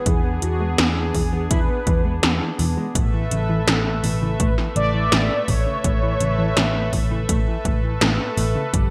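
A brassy, detuned synth brass melody with chorus and digital delay leads this romantic, uplifting synthwave excerpt at 83 BPM, over a smooth, warbling analog pad with sidechain pumping, a very quiet triangle-toned pluck arpeggio, a clean fingered electric guitar riff with ensemble chorus and delay sitting in the background, a foam-muted picked bass, a punchy electronic kick, and up-front pad drums with a gated snare and metallic hats, set in a bright 1980s-style digital production with light reverb as the chords move from E to Aadd9 at 3.0 seconds.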